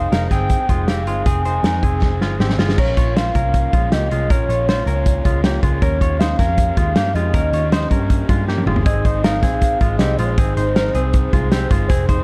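A loose, acoustic indie drum kit sits up front in a small room, its tight kick, medium-tuned snare, hi-hat, toms and crash driving this wistful, bittersweet slice of jangly indie pop at 158 BPM in 4/4 with a straight feel, Bb dorian and tuned slightly flat. Above it floats a warbling, nostalgic lead with a mellow triangle-and-sawtooth tone, fast attack and sustained notes, colored by chorus, vibrato and tape echo as it carries the melody between C5 and Ab5. A clean, compressed semi-hollow electric guitar plays fingered arpeggios with a hollow-body glow, while a lo-fi, overdriven garage guitar is picked in the background. Underneath, a vintage foam-muted electric bass gives dark, round, amped low notes. The chords move from Fm7 to Bbm at 2.8 seconds, then Eb7 and Ab, with drum fills marking the change and another at 8.5 seconds, all set in a dark, warm production with studio reverb in this excerpt cut from a longer piece.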